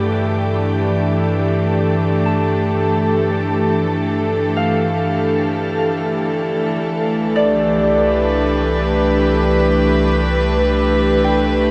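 A wet shimmer reverb with a long tail surrounds this spacious, melancholic ambient excerpt in free time, where a dark studio string section up front holds soft, pure sul tasto chords with a smooth, floating top over a round, deep analog bass. In the background, a resonant, overtone-sweeping drone with chorus sounds until 6.9 seconds, while a breathy, wind-like noise texture fades out. A mellow concert harp enters at 2.3 seconds with ringing arpeggios through tape echo, and the harmony moves from G7(no3) to Cmaj7 at 6.8 seconds.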